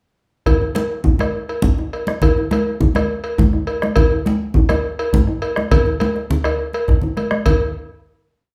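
Earthy and festive, this short, complete West African traditional piece is a drum ensemble performance in 12/8 with a straight feel, all four players sounding together from 0.5 s to 7.6 s as if performing live in one room. The bombo anchors the group with a deep, dark tone heard close, its evenly spread pattern sitting loudest in the mix. Up front, the metallic cowbell carries the bell pattern with a live-room sound, while the medium-tuned djembe, played with soft hands, comes across compressed and saturated. The congas add bright, damped thin-skin strokes struck with hard hands, heard close and dry against the large studio reverb that surrounds the ensemble. A drum fill at 6.9 s leads into a final hit that closes the piece.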